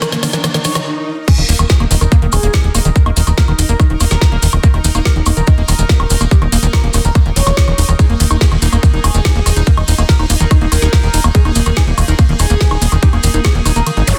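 Hypnotic and intense, this psychedelic trance excerpt opens with a short build-up in which a barely audible, cloudy granular pad, an electronic riser and swell, a drum fill and a filter sweep on the squelchy, resonant acid bass fall into a brief stop before the drop at 1.3 seconds, where a tight, up-front electronic kick and a punchy, funky plucky analog bass join the screaming, guitar-like overdriven synth lead with its phaser, sampler grit and dub echo, a bubbling stepped-filter texture in the background, a garage drum kit with woody snare and metallic hats, and grainy maracas, until the kick drops out at 13.9 seconds and a final zap closes the dense, heavily limited mix.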